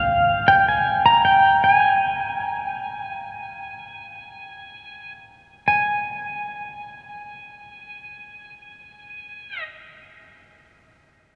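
A lone electric pedal steel guitar opens this brief folk fragment, carrying the melody in free time with an intimate, tender mood. Its clean, compressed tone sits up front, shaped by fingerpicks, slide and volume swells, and it stays high in its register between F5 and Bb5. Over the first 5.7 seconds the pace gradually slows before a second passage begins and runs to the close. The guitar stops at 9.6 seconds, and a vast cathedral-like reverb, lingering for about 6.0 seconds, lets the final notes hang in the air of what sounds like a church or concert hall. The result is a glowing, suspended moment lifted from a longer piece.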